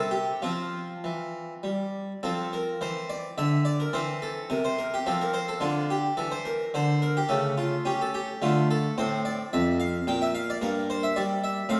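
A dance-like triple metre at roughly 97 to 111 BPM moves with a flowing rubato through this baroque-style suite movement in F major, cut from a longer piece and lasting just under 12 seconds. A solo Italian-style harpsichord with two sets of strings carries everything from F2 up to G5, its plucked, full tone sounding dry and close-miked up front even as the recital hall's wet reverb places the listener further back in the room. After a brief opening phrase, the second section from 2.2 seconds wanders through harmonies such as Dm11 and A/C# before passing through a chordless moment at 10.1 seconds and settling onto Gm6.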